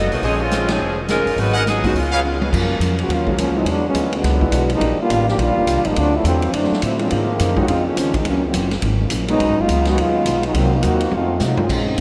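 A clear, up-front trombone section takes a solo from 2.5 s to 11.7 s, carrying the second line over a brassy, sultry big band swing at 209 BPM, after a bright, tape-echoed saxophone section with light vibrato opens on the melody alongside very quiet, close-miked trumpet stabs and a band accent at 0.7 s. Underneath, a woody pizzicato upright bass, a swinging drum kit with a boomy kick and drum fills at 2.2 s and near the end, a dark, clean hollow-body electric guitar and a smooth vintage grand piano keep the rhythm moving through lush extended chords. Everything sits in a dreamy mix soaked in huge ambient reverb, and the excerpt closes on soft, loose trombone chords in the background.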